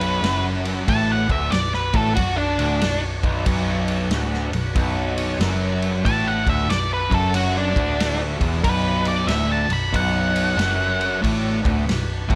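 Brooding, gritty blues rock with a southern rock edge, this excerpt at 93 BPM in B minor swings over a single Bm chord as an up-front, dark octave-fuzz lead guitar with plate reverb carries the melody until 11.2 seconds, a bright, double-tracked distorted guitar drives a low riff, a round, foam-muted picked bass anchors the bottom, an acoustic drum kit with punchy kick, dark ride cymbal and medium-tuned snare keeps time, and a thick overdriven tonewheel organ holds sustained chords through a slow rotary speaker in the background.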